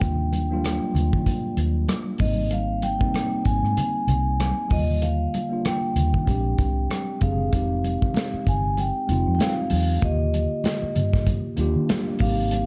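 A round, punchy, foam-muted electric bass anchors this lush 1970s-style soul fragment in Eb major, set at 96 BPM in 4/4 with a swung sixteenth-note feel. A mellow tine electric piano with subtle chorus sits up front beside a ringing, metallic vibraphone that carries the melody with medium mallets and motor off. A dark, smooth drum kit with tight kick, snare, rim click and hi-hat plays alongside thick-skinned congas in the background, in a dry, warm production where the chords run from Ebmaj7 through Abmaj7 and Bb13, reach Fm7 at 7.5 seconds and return to Ebmaj7 at 10.0 seconds.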